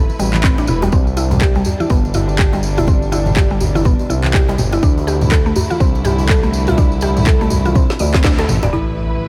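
A punchy, tape-warm electronic kick sits up front in this driving, earthy afro house excerpt at 123 BPM with a swung 16th feel, joined by a smooth, gliding sawtooth synth bass, a woody, round FM synth pluck with chorus and delay playing arpeggios, and lush bowed strings holding sustained chords over Am7, Cmaj7 and Dm, all three pumping with sidechain compression, while an afro-pop drum kit with handclaps, toms and a woody snare, quiet congas, a djembe with metal rattles in the background and a jingly tambourine fill out the groove until a drum fill at 7.8 s leads to an electronic impact and a dry, rustic folk marimba note at 8.7 s.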